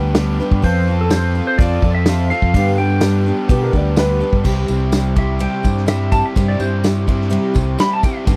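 Dry, close 1970s-style studio sound frames this hopeful folk and heartland rock excerpt, where a twangy, clean lap steel carries the melody with volume swells and turns to a slide solo from 4.5 s, over a bright picked acoustic guitar, a double-tracked overdriven electric guitar riff, a round, dark fingered bass and a punchy, up-front country drum kit, with a jingly tambourine in the background and a woody upright piano line appearing briefly at 3.5 s.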